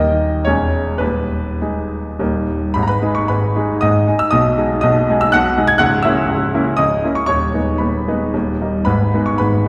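Classical romantic triple-time dance for solo piano, built on dotted rhythms and played with a free, rubato feel in 3/4. The mood is capricious and nostalgic, a brief fragment cut from a longer piece that runs just under ten seconds. A clear baby grand carries everything alone from 0.0 to 9.7 seconds, its natural, short-sustaining tone sitting up front while spanning from deep bass at C#1 up to G#6. The harmony moves through minor-key shadings, passing a diminished chord at 5.8 seconds before settling back onto the home minor chord at 8.9 seconds. A second section begins at 2.8 seconds. The room adds a wet scoring-stage reverb, and the listener seems placed further back in the space.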